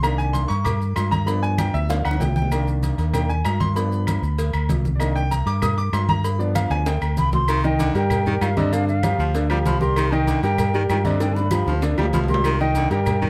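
A driving 4/4 pulse at 194 BPM with a straight feel sets this fiery salsa excerpt in motion, carried by low-tuned congas with a thick skin sitting in the background, round bongos and cowbell heard from a distance, ringing metal-shelled agogo bells and timbales, woody claves, and grainy maracas tucked close and dry behind the rest. In C minor, the harmony rocks between Cm7 and G7, and the clear, woody upright piano takes a solo up front for the opening 7.5 seconds while a punchy, amped fingered electric bass anchors the low end. Drum fills break in at 1.9, 6.7 and 11.2 seconds, the second leading into a new section at 7.5 seconds. There a bansuri, which enters at 7.2 seconds, carries the melody with an airy bamboo tone, vibrato and unsteady tongued phrasing, and a raspy, gritty baritone saxophone adds a smooth-topped second line beneath it. The recording has close, detailed microphones and light reverb, and it is cut from a longer piece.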